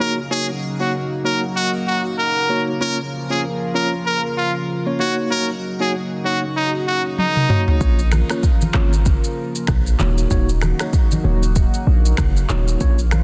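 A dense, heavily limited modern master with light digital ambience frames this hypnotic, sultry afrobeats excerpt, where a brilliant, forceful trumpet with vibrato, scooped notes and digital delay carries the melody until 7.7 seconds over a mellow tine electric piano and a smooth chorused analog pad, before a drum fill at 7.2 seconds brings in an electronic afro-pop kit with a deep kick, finger snaps, handclaps, rim clicks, shaker, toms and a softly clipped snare, joined by a boomy 808-style bass and ringing, low-tuned congas in the background.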